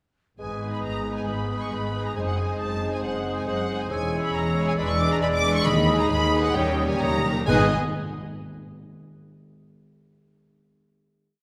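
A lush, expressive violin section carries the melody with soft-attacked vibrato through this brief, stormy and restless classical-period movement for symphony orchestra, as a second violin section and the violas play syncopated and sustained chords in the background, and cellos and double basses hold the bowed bass beneath. Airy, hollow flutes, a punchy clarinet and a dark bassoon add chords in the rhythm of the tune while a tight, mellow French horn section sustains chords, all set in the reverberant bloom of a scoring stage. The pace slows from 3.0 seconds, and close, dry timpani enter at 5.7 seconds with a fill at 6.6 seconds leading into the final chord at 7.5 seconds.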